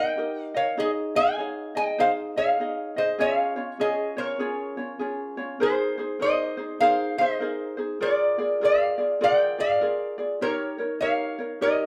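Relaxed and languid, this short Hawaiian excerpt moves at 100 BPM in 4/4 with a swung eighth-note feel, starting in Db Lydian and shifting to Ab major at 5.6 s. Up front, a metallic, nasal lap resonator guitar carries the melody with slide and fingerpicks, bathed in plate reverb, while a light, fingerpicked ukulele supplies warm accompaniment throughout. Both sit in a wet small room, and the harmony drifts from Eb through Absus4, Ab and Db before turning to Abadd9, Bb7 and Eb7 in the second half.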